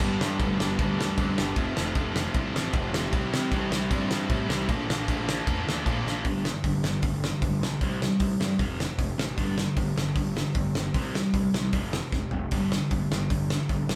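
This rowdy, upbeat punk rock clip, cut from a longer piece, sounds like a band playing live in one room, with a moderate studio reverb and a pumping room sound around the acoustic drum kit. The loose indie kit sits up front, with a fat snare, punchy kick and dark cymbals, and it rolls through fills just before 6.3 seconds and again around 12.1 seconds. A sludgy, overdriven electric guitar carries a riff the whole way through with a warm, picked tone, while a bright, cranked stack guitar adds its own riffing in the background until it drops out at 6.3 seconds. Underneath, a fuzz-soaked picked electric bass growls along in the background with a direct, amped edge. The opening passage moves through G, F, C and Bb, and the second section shifts to punchier power-chord changes circling between G5, C5 and F.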